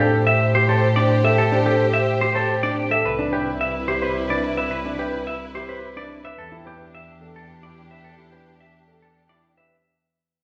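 Minimalist classical pattern music in 3/4, bright and propulsive, where a clean, compressed, hollow-body electric guitar carries the melody up front over natural-sounding grand piano arpeggios, lush, distant bowed strings holding sustained chords with vibrato, and an intense, smooth-topped bowed double bass, all moving through Am7, Cmaj7 and Em7 in a reverberant church or concert hall across a fragment cut from a longer piece that fades out over its roughly 9.7 seconds.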